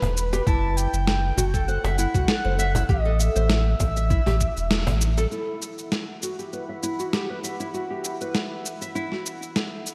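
Mystical and hypnotic, this organic downtempo excerpt at 99 BPM in E minor pairs a breathy, flute-like synth lead with tremolo, lush chorus and digital delay over a deep, round sub bass with sidechain pumping, a woody cajon, a thumpy kick, and gritty, up-front electronic cabasa and snare with gated reverb. A fingerpicked nylon-string guitar arpeggiates throughout and moves through a filter sweep from 5.3 seconds. By then the kick has dropped out at 4.5 seconds, the lead at 5.0 seconds, and the bass and cajon at 5.3 seconds, when a dark, detuned analog pad enters to hold an Emadd9 chord in a lush hall within a bright 1980s-style digital production.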